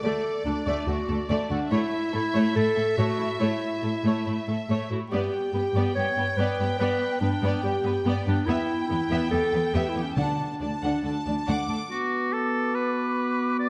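In straight 4/4 at 142 BPM, this cinematic fragment in D major, cut from a longer piece, moves with an adventurous, soaring spirit. From the opening, a lush violin section carries the melody high with focused vibrato, while a second, more distant violin line, a clear clarinet, and a clear viola section fill in beneath, all resting on an expressive, up-front cello section in the bass. The harmony steps from D through A, G and Em before returning to D, and at 10.2 seconds a hard-mallet timpani strikes briefly with a close, dry, articulate attack. At 11.9 seconds the strings drop away as the music turns to Bm, handing the texture to a solo oboe, an airy, silvery flute placed at a distance, and a mellow, punchy French horn section holding sustained chords alongside the continuing clarinet. A moderate scoring-stage reverb gives the ensemble a sense of space.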